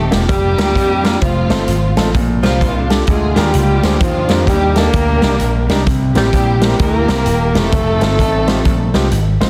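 Uptempo gospel with a jubilant, uplifting swing, this excerpt pairs a warm tenor saxophone, with vibrato and scooped notes, and a dark, lush bowed string section on the melody, over an amped vintage slap bass, a clear, woody upright piano with long sustain, and a natural big-room drum kit of hi-hat, punchy kick and snare, set in light small-room reverb and a dense, heavily limited modern master.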